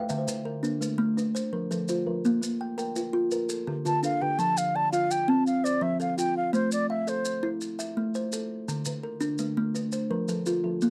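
Southern African traditional music in a rippling, hypnotic mbira-style interlocking cycle at 112 BPM in 12/8 and F major, where a bright, hollow-box kalimba plucked with a thumbnail sits up front, a softer, mellow solid-board kalimba with a vintage, band-limited tone drops out at 4.8 seconds and returns at 8.9 seconds, grainy maracas sound in a live room, and an airy wooden baroque flute with vibrato and a crisp attack carries the melody from 3.9 to 7.5 seconds, all in a dry, close 1970s-style studio sound with light reverb, cut from a longer piece.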